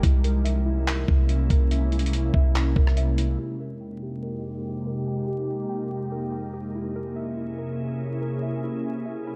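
Vinyl crackle sits under a light reverb and digital ambience in this spacious, ethereal cloud-rap excerpt, set in F minor at 143 BPM with a half-time feel in 4/4. A glassy FM pad holds sustained chords throughout, its slow attack and long release softened by ensemble chorus, built-in reverb, a low-pass filter and sidechain pumping. Above it, muted felt-like synth keys play intimate, warbling arpeggios with a vintage, full-bodied tone, colored by chorus, tape echo and a low-pass filter. At the start, a trip hop sampler-style drum kit of handclaps, hi-hat, rim click and a thumpy kick sounds pitched down, muffled and tape-warm, while a clean, boomy 808-style bass drops deep, decaying sine notes on C2. Both drop out by 3.4 s, leaving the pad and keys to drift through a filter sweep over the Fm11 chord before the C7b9b13 returns.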